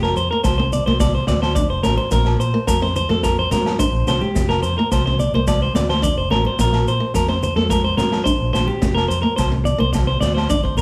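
Sunny and danceable, this highlife guitar band excerpt in Bb major moves at 108 BPM in a straight 4/4, with a bright, twangy clean electric guitar up front playing arpeggios through harmonic tremolo over a dark, fingerpicked nylon-string guitar in the background, a round, punchy fingered electric bass, a gritty, saturated breakbeat drum kit with a punchy kick, ringing agogo bells, grainy maracas entering at 0.2 seconds and very quiet high-tuned congas entering at 0.6 seconds, all sharing a large studio reverb that feels like a band playing live in one room, cycling through F5, Bbsus2 and Fsus2 chords before a drum fill at 10.5 seconds.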